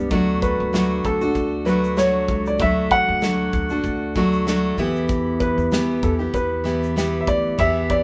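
Picked steel-string acoustic guitar and upright bass open this sunny, heartfelt acoustic pop excerpt, the guitar sitting up front with a warm, auditorium-like body and a touch of finger squeak, while the pizzicato bass sounds woody and brilliant on its steel strings. A loose indie drum kit joins almost at once, with a tight kick, a medium-tuned snare and shaker, all heard in a small-room, mid-forward setting under a gently swung sixteenth-note feel. At 0.4 s a dark upright piano takes the melody, its mellow, smooth, vintage tone placed up front alongside the guitar. The harmony rests on D before shifting to E minor at 4.8 s. The band plays live together in one room, wrapped in a moderate studio reverb, and the passage is cut from a longer piece.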